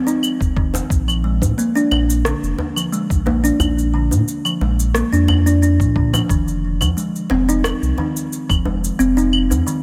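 Mystical and warm, this organic downtempo passage, cut from a longer piece, centres on an up-front, woody kalimba playing short, thumbnail-plucked arpeggios with a hollow-box tone and a touch of delay, moving between F7(no3) and Bb. A round, sine-like sub bass with tube saturation and sidechain pumping joins at 0.4 seconds alongside a gritty, thumpy sampled kick. Overdriven electronic shaker, claves and rim click sit lower in the mix, while a deep acoustic djembe enters at 0.7 seconds, all inside light reverb over a faint mains hum.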